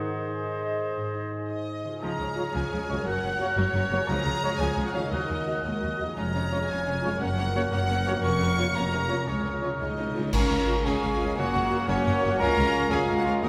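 Mellow trumpet stabs ring out above this adventurous, soaring passage from a heroic film score in a lilting 6/8, cut from a longer piece. It opens with a build-up of airy flute, present clarinet and smooth oboe lines over ringing, fingerpicked harp arpeggios. At 1.5 seconds the bright, focused violin section takes the melody with lush vibrato, joined by a second violin line, lush viola accompaniment and a bowed bass of clear cellos and rich double basses. Tight French horns add sustained chords in the background alongside the trumpet. Quiet timpani strikes with hard mallets mark the phrases and lead into a fill. Dark cymbals and concert bass drum join from 8.2 seconds to help drive the band accent at 10.3 seconds. A wet church reverb surrounds the whole orchestra with a long, spacious hall sound.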